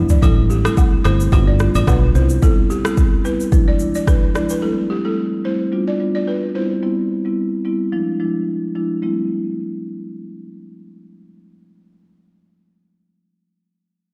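Mellow and hypnotic, this afrobeats excerpt in A minor moves at 109 BPM with a light 16th-note swing, cycling through Am7, G7, Cmaj7 and E7b9 as a round, rosewood-toned marimba with soft mallets carries the accompaniment up front for the whole 12.7 seconds. A punchy, foam-muted fingered electric bass and an overdriven deep house drum kit with deep kick, rim click, shaker and toms sit up front at the start, opening with a drum fill; the bass drops out by 2.4 seconds and the drums by 4.6 seconds. A buzzing, airy balafon riff with delay floats quietly until 6.6 seconds, agogo bells and woodblock add a brief acoustic clatter at the outset, and the whole piece has the feel of a big sound system played in a bare stone room.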